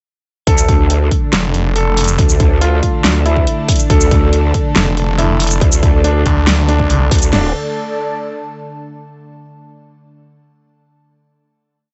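Heavy wobble dubstep in D minor at 140 BPM, this short, complete piece has a half-time feel and a chaotic, aggressive mood. The drop opens at 0.5 seconds on a D5 chord. Two layered electronic drum kits hit with a punchy kick, a huge snare, toms, crash, metallic hats and shaker, both kits carrying a tape-warm polish. Underneath, a detuned growl bass wobbles through a formant filter with chorus and overdrive, while a snarling sawtooth bass with distortion cuts in with chopped phrases. Above this, a clear, intimate grand piano repeats a riff melody through tape echo with its action noise audible, and an evolving wavetable pad morphs in the background with chorus, reverb and sidechain pumping. An airy, breathy pad with a noise layer drifts through slowly shifting chords and rings on alone to close the piece at 9.0 seconds, in a dry, dark-topped mix.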